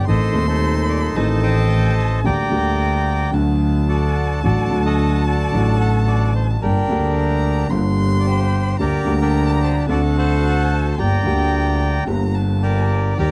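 A dark, warm production with light reverb and vinyl crackle frames this dramatic, tense tango passage, cut from a longer piece and played with an elastic rubato feel. A reedy, smooth bandoneon carries the melody over a boxy, intimate grand piano whose action noise is audible, while a close, expressive violin adds a second line with vibrato and portamento. Up front, a bowed double bass sounds biting and earthy, and a rich symphonic string section lands brief background stabs at 13.2 seconds.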